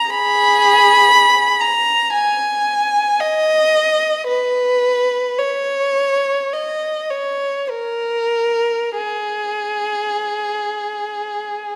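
Free rubato pulse in 4/4, drifting between 46 and 62 BPM, shapes this mournful, meditative classical passage for unaccompanied violin in G# minor, cut from a longer piece. A single bowed violin, close and up front, sings between G#4 and B5 with a warm tone, soft attacks, vibrato and expressive portamento slides across its 11.8 seconds. A moderate recital hall reverb, 1.7 seconds long, adds a gentle glow of space behind the intimate solo line.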